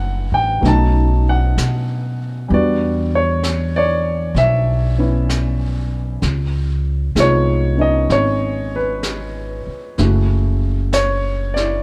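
A grand piano and upright bass open this tender, late-night jazz ballad together, settling into a slow 64 BPM swing in 4/4. The piano sits up front with an intimate, natural tone, its action noise faintly audible as it carries the accompaniment across a broad span of the keyboard. The pizzicato bass is woody and thumpy, its steel strings giving each low note a solid presence close to the listener. At 0.6 seconds a brushed drum kit joins on snare and hi-hat, sitting mid-forward with a high-tuned snare and a rolled-off top. The harmony moves from F#m7b5 through B7, Em9 and C#7 before arriving on F#m7, all wrapped in light reverb and a dark, warm production in this short cut from a longer piece.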